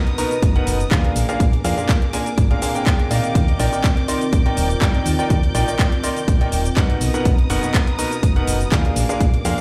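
Piano house at 123 BPM in Eb major, this euphoric, uplifting cut from a longer piece moves through Bmaj7, Bb7 and Ebmaj7 chords with a light swing on the sixteenths. A bright concert grand piano carries the riff up front, brilliant and polished with audible action noise and deep bass, treated with tape echo and sidechain pumping. Beneath it, a solid FM bass enters at 0.4 seconds, punchy and round with a fast attack and decaying tone, pumping alongside a punchy, overdriven electronic kick that sits up front. A house drum kit adds handclaps, shaker and bright hi-hats, overdriven and set in studio reverb. A dark, woody violin section with lush vibrato holds sustained chords, joined by a moody sawtooth-and-sine ambient pad with detuned unison, chorus and slow attack that sits in the background, both breathing with the sidechain. The whole mix sounds as if played on a big system in a bare stone room, with light reverb.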